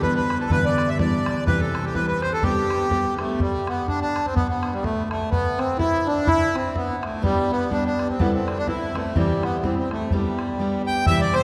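Lively and cheerful, this Celtic folk polka fragment moves at 125 BPM in swung 2/4 and G major, with a reedy, close-miked accordion carrying the melody up front, its slow-beating reeds dry and full, while a jumbo steel-string acoustic guitar fingerpicks warm accompaniment that drops out at 3.4 seconds and returns at 7.2 seconds, and a boomy, open bodhran provides the percussion in a church setting with a long, wet reverb.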